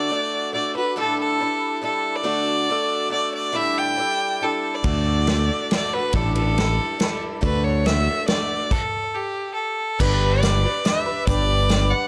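A straight triple metre carries this hopeful, open-road folk and heartland rock fragment, cut from a longer piece. A clear, focused fiddle sits up front with the melody, bowed by a single player with light vibrato and a touch of analog delay. Beneath it, a picked twelve-string acoustic guitar gives a shimmering, octave-doubled accompaniment with a boxy body and a swing to its picking, moving between D and A7sus4. At 4.8 seconds a bright, fingered electric bass arrives, direct and forward, together with an acoustic drum kit played with bundle sticks in a small room, its punchy kick and medium-tuned snare set against dark cymbals. After a stop at 8.7 seconds, the music turns to a G chord at 10.0 seconds, all under a light reverb.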